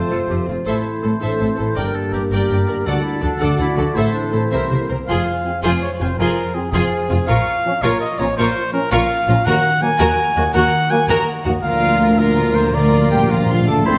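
Heard in a reverberant recital hall, this 14-second cut from a heroic adventure film score moves at 109 beats per minute in a straight 6/8, its mood adventurous and determined. Two lush, bowed violin sections carry the melody and a second line from a distant, vibrato-rich place, over smooth violas, dark, woody cellos and rich double basses that anchor the bass. A close-miked solo trumpet stands up front with warm, lightly vibrato stabs, sounding briefly at the start and then again from 5.1 seconds to the end, while a mellow trombone section holds sustained chords throughout and a mellow horn section adds its own chords at the outset and near the close. A mellow, roomy oboe and a bright clarinet trace second lines in the opening seconds, a ringing, fingerpicked concert harp spins arpeggios in the background, and an airy flute group with a crisp attack joins only at 13.1 seconds. Timpani with soft mallets and round calf heads enter around 1.8 seconds and return for a fill from 11.6 seconds, as the harmony turns from F major through a shadowed run of minor chords toward Bb over D.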